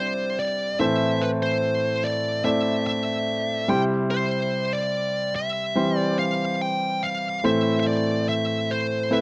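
Tender and emotional, this short pop excerpt at 72 BPM in C major pairs a dark, distorted high-gain lead guitar carrying the melody with slapback echo against an intimate concert grand piano accompaniment, its audible action noise, deep bass and long sustain captured in a dry, close 1970s-style studio sound as the harmony moves between C and Am.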